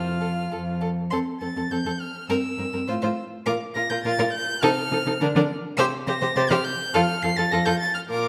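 In a straight 2/4 at 103 BPM, this spirited, graceful classical-period string quartet movement in F major moves briskly, cut from a longer piece. A dark, intimate first violin carries the high melody with sul tasto bowing, light vibrato and a soft attack, while a rich second violin joins at 0.2 s with an even second line. Beneath them a smooth viola supplies accompaniment and a warm, distant-sounding cello anchors the bass, all bathed in the wet reverb of a recital hall as the harmony turns from F through C7 and B-flat before settling back on F.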